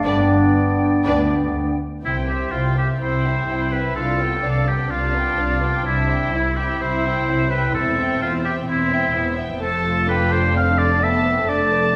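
A cheerful, graceful classical-period movement for symphony orchestra opens at 127 BPM in C major: for the first 1.8 seconds, mellow French horns hold sustained chords while a small, airy flute group, a dark, distant clarinet and a roomy bassoon join the strings. Throughout, the soft-attack violin section carries the floating melody, as a clear, up-front oboe and a second, intimate violin section add supporting lines, rich violas fill the middle, and cellos and double basses hold the bass. A wet recital-hall reverb surrounds the ensemble as the harmony moves from G through C to F in this short cut from a longer piece.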